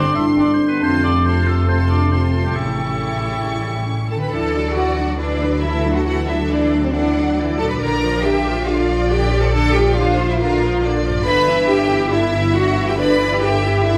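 A lush symphonic violin section carries the soaring melody in this heroic, cinematic 138 BPM excerpt, over a more distant, expressive second violin line, smooth violas, rich cellos and an up-front double bass section with portamento, with mellow ringing harp arpeggios and warm French horn chords beneath, while a clear oboe, clarinet, pure-toned flute and dark trombones drop away by 4.3 s, all set in a reverberant hall.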